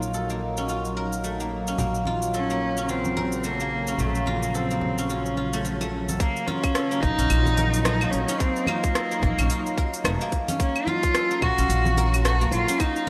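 A swung 109 BPM groove in 4/4 drives this hypnotic stretch of organic downtempo, taken from a longer piece. Crisp, overdriven electronic drums supply claves, hi-hat, rim click and shaker, while soft-handed congas and bongos slip in very quietly at 1.8 seconds. A tight, overdriven electronic kick arrives up front at 6.2 seconds, just as a pure, meditative quartz singing bowl, ringing with slow beating in the opening half, drops away. A woody pizzicato upright bass anchors the low end with sidechain pumping. A detuned sawtooth analog pad with chorus and tremolo holds soft-attack chords that also pump, and a silvery guzheng, played with fingerpicks, rings out arpeggios through a low-pass filter and tape and slapback echo. From 2.3 seconds a rich, bowed solo cello carries the melody up front with smooth, even vibrato and its own echoes, over an Ebm/Bb harmony that shifts to Gb near the close, all bathed in a lush 2.6-second hall reverb with a big arena feel.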